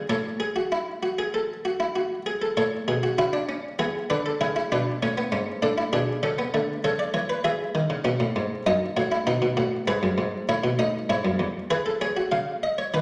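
A muted, lute-like buff-stop harpsichord plays alone and up front through this solemn, driving baroque-style three-part fugue in A major at 98 BPM in a straight 4/4, its plucked Flemish-style tone ranging from E2 to E#5 and carried by a wet recital-hall reverb as the harmony moves from A through E7 and B7/F# before landing on C# at 12.3 seconds in this 13-second passage cut from a longer piece.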